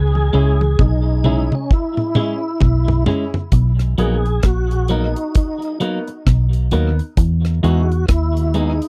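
Roots reggae at a relaxed 66 BPM in B major, this sunny, laid-back cut from a longer piece moves in 4/4 with a swung sixteenth-note feel. The deep reggae drum kit and the vintage muted fingered electric bass sit up front, the drums dark and smooth with a tight kick, rim click, hi-hat and toms opening with a fill over the first 3.5 seconds, while the foam-muted bass sounds round and amped. A clean electric guitar adds bright, twangy, compressed accompaniment touched with tape echo, and a very quiet electric guitar with an envelope filter plays a dark, picked riff low in the mix. A warm, woody, open upright piano offers stabs as the harmony moves from C#m to Bmaj7 and then Emaj7. From 3.5 seconds the tonewheel organ takes a solo, its full, lightly overdriven tone colored by chorus vibrato, a slow rotary speaker and tape echo, all within a dry, close 1970s-style studio sound.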